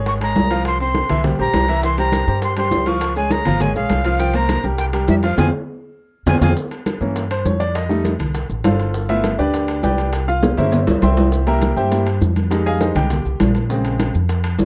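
Dry, close 1970s-style studio sound with light reverb frames this fiery, danceable salsa excerpt in F minor, moving at a brisk 202 BPM in straight 4/4. A breathy, reedy jazz flute with vibrato and a crisp, chiffy attack carries the melody up front until 6.5 seconds, over a woody, thumpy pizzicato upright bass and a brilliant, polished baby grand piano comping through chords such as Db, Csus4 and C7sus4. The percussion sits behind them: thin-skinned congas, tight high-tuned bongos played with soft hands, and ringing metal-shell timbales heard from a distance in a large room, with grainy, mellow maracas joining at 1.8 seconds. A band accent and drum fill land just before the piano steps into a solo at 6.6 seconds. That solo runs to the end over a harmonic path through Bbm69/F, F7, G7, C7b9 and Fm7, with a second drum fill partway through.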